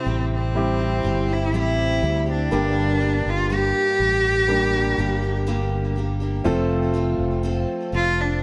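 A clear, focused bowed cello sings the melody with vibrato up front in this hopeful, tender pop ballad at 61 BPM, carried by a concert grand piano with deep bass and long sustain, picked steel-string acoustic guitar arpeggios touched with delay, and a bright, direct fretless electric bass, all in light studio reverb as the chords move from C to Gm to F.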